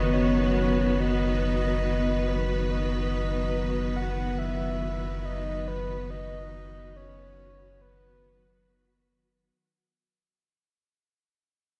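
A B chord over F# opens this reflective, spacious ambient fragment in free time, with a clear studio string section, a breathy flute-like synth lead and a sub bass sounding together from the start. The bowed strings hold lush, smooth sustained chords up front with an even vibrato, while the sub bass sits on a deep F#1 with a round, sine-like tone. The soft lead carries the melody between B4 and F#5, its triangle and noise-layered tone thickened by a sub octave and colored with chorus, vibrato and tape echo. From 0.2 seconds a very quiet analog drone on F#3 adds an evolving, wave-folded texture with its own chorus. A fade-out runs from 0.4 to 9.5 seconds, and the passage, cut from a longer piece, sits in a dark, warm production bathed in a lush, wet hall reverb.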